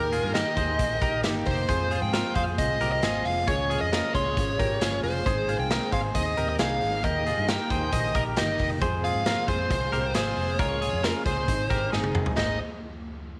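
This jangly indie pop excerpt features a dark, overdriven lead guitar carrying the melody up front, its tone thickened by slapback echo. Beneath it, a woody, fingerpicked acoustic guitar with old strings sits in the background, while a bright, twangy clean electric guitar spins arpeggios through analog chorus. A round, foam-muted fingered bass anchors the low end, and a raw garage drum kit, gritty and saturated with a punchy kick and a pumping stone-room sound, enters at 0.1 seconds. A lush, bowed string section holds very quiet sustained chords with vibrato, and the whole mix sits in light reverb and small-room ambience. The chords cycle through Eb, Fm, Db and Ab, giving a breezy, nostalgic feel, and a drum fill at 11.9 seconds leads into a brief new section just before the cut.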